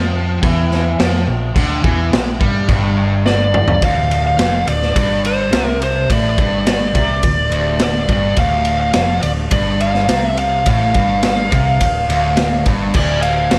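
A biting, overdriven lead guitar sits up front from 3.3 seconds, soaring in a high register over an aggressive, driving hard rock excerpt at 105 BPM in D minor. Beneath it, a bright cranked stack guitar with harmonic tremolo and a sludgy distorted guitar grind out the riff in the background, anchored by a dark, round, foam-muted vintage bass. A raw garage drum kit, gritty and saturated with a punchy kick, enters at 0.4 seconds and throws in a fill just before the move from a Bb5 power chord to D minor at 3.8 seconds, all within a lush hall reverb that gives a big arena sound.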